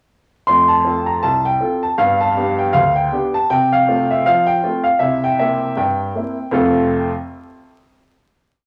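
A clear, woody upright piano sits up front in this lively, jaunty ragtime piece, playing a single-line melody over a stride bass in a swung 2/4 feel. The solo piano carries a long sustain and a cassette-tape colour, bathed in a wet spring reverb with small-room ambience and vinyl crackle that give it a homespun sound. It plays from 0.5 seconds, reaches a final chord at 6.5 seconds, and rings out until 7.1 seconds.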